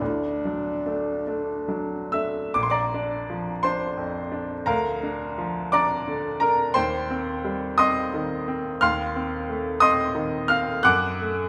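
A warm alto saxophone sings a D4 with classical vibrato and a smooth top, while a bright grand piano sounds alongside it from the very start. This serene, lyrical fragment of a longer romantic duo moves in a gently swaying 6/8 with a free, rubato feel. The saxophone's brief phrase ends at 2.1 s, and from there the brilliant, up-front piano carries on alone until 11.5 s. The piano spans from Bb1 up to F#6, moving through Bb, Bb/D, Cm/Eb and F7/Eb before settling on D/F# at 10.8 s. A generous recital hall reverb surrounds both instruments with a lingering, resonant bloom.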